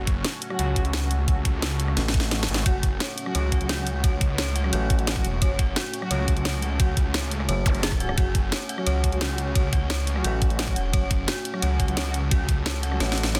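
A detuned saw bass, thick and saturated, rumbles under a moody ambient pad on F# minor from the start of this aggressive, mechanical dark technical drum and bass excerpt at 174 BPM, as a knocking kick and cracking snare with hi-hat, ride and rim click drive it along, distant mellow brass stabs echo through delay, a growling FM bass bursts in at 2.0 seconds beside a drum fill, an eerie, warbling synth bell arpeggio enters at 2.7 seconds, and a background zap flicks past at 7.7 seconds, with the pad, saw bass and bell pumping under a dense, heavily limited master.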